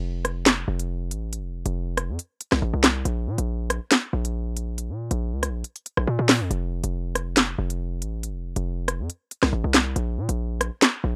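This short cut from a longer piece has a dry, rough home-demo sound with little reverb, so both parts sit close and up front. It is a tense, cold drill track in a half-time feel. A hard-hitting 808-style bass runs from the very start to 11.2 seconds, ranging from F1 to Bb2 with a heavy, punchy, saturated sine tone, a noise layer, a fast attack and a decaying tail. The electronic drill kit comes in at 0.2 seconds and plays until 10.9 seconds, combining a sharp snare, crisp hi-hats, rim clicks and handclaps. The produced drums sit louder and more present than the bass, giving the track its hard edge.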